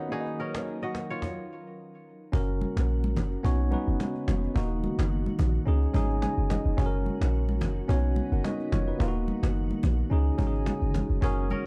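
A clean tine electric piano, an ethereal FM pad with ensemble chorus and a ringing, fingerpicked kora with delay open this breezy, romantic afrobeats excerpt in F# major at 108 BPM, with a snappy, gritty cajon close behind before a brief stop. At 2.3 seconds a deep, boomy 808-style bass arrives up front, and moments later bright, damped congas join in the background as the kora drops out, returning only in the closing moments. The electric piano carries the chords over a lightly swung groove and adds a short fill near 6 seconds, all set in a dark, warm small-room sound.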